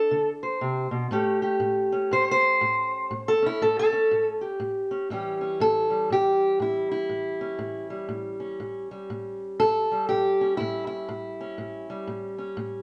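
A dark, lightly reverberant recording puts a single fingerpicked steel-string acoustic guitar up front, its woody, boxy parlour tone and old strings carrying a short slapback echo. This laid-back, rollicking acoustic country blues swings at 120 BPM in 4/4, in A mixolydian with tuning at A4 = 437 Hz, moving from D7(no3) to A7 within its opening seconds. The guitar plays alone from 0.0 to 12.8 s, ranging from A2 to C5, and a new passage begins at 5.1 s in this fragment cut from a longer piece.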